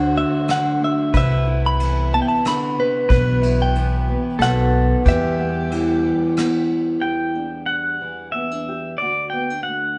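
Acoustic folk-pop ballad in E minor at 92 BPM in a straight 3/4, heartbroken and intimate, taken from a longer piece and played by a band live in one room with a wet studio reverb and a rolled-off top end. A clean, direct-recorded electric guitar carries the melody with tremolo until 6.3 seconds, shadowed by a compressed pedal steel guitar played with fingerpicks and slide, whose volume swells form a second line. A fingerpicked nylon-string guitar sits up front with audible finger squeak, while a woody pizzicato upright bass anchors the low end and a chamber string section holds soft, sul tasto chords in the background. A vibraphone struck with medium hard mallets, motor off, adds ringing, dark arpeggios in two brief passages, and a soft brush kit keeps time with a tight kick, rim click and dark ride cymbal. At 7.0 seconds the harmony moves from E minor to Em7 and the pedal steel takes a solo that runs to the end at 10.0 seconds, carried through by the nylon-string guitar.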